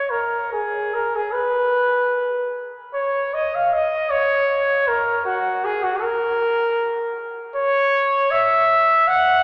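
Rubato phrasing in a loose triple metre gives this brief classical passage for unaccompanied trumpet a free, expressive pulse and a nostalgic, serene mood. The solo trumpet sounds mellow yet punchy, ranging from F#4 to F#5 across the 9.4 seconds of this fragment from a longer piece. A lush cathedral reverb with a long 4.5-second tail surrounds the trumpet, and the softened top end makes the overall sound dark and gentle.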